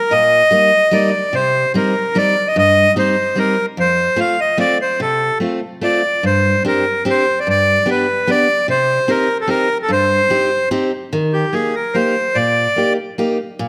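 A reedy, hollow accordion carries the melody up front from the opening, joined almost at once by a picked steel-string acoustic guitar whose finger squeaks and roomy sound fill out the accompaniment in this festive, bouncy alpine folk dance excerpt in waltz time, set in a moderate stage reverb as the accordion drops out at 12.9 seconds and the guitar rings on to 13.7 seconds.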